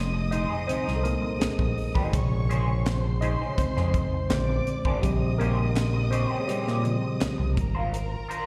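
A worn, slightly out-of-tune tine electric piano takes the solo up front, lightly overdriven and touched with slapback echo as it moves through Fm7, Bbm9, Bb9 and Eb13/Bb before settling on Ab69 at 7.6 seconds. This is a short cut from a longer piece of lush, 1970s-style soul at 83 BPM in a straight 4/4, and the mood is bittersweet and smooth. Underneath, a synth bass blends sawtooth and square-wave tones with vibrato and a moving notch, sitting prominently in the mix. A twangy, lo-fi electric guitar played through a small old amp picks out a wah-coloured riff with its own slapback echo, while a dark, bowed string section adds a quiet second line with expressive vibrato. A dry, polished funk kit with a high-tuned snare and a tight kick holds the groove, and very quiet, crisp group handclaps join from 1.4 seconds. The whole performance is heard as if through a venue's PA with the reverb of a recital hall.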